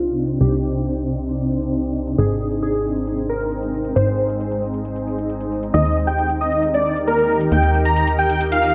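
A glassy, crystalline wavetable pluck with a chorused, tape-warbled delay opens this euphoric uplifting trance excerpt at 135 BPM, over a shimmering ethereal pad swept by a filter, a punchy, funky analog bass moving through Cmadd9, Ab and Eb, and filtered electronic hi-hat and tambourine sitting far back in a large room, before a huge, thick, compressed supersaw melody with vibrato and delay takes over at 5.7 s, all set in a lush hall reverb.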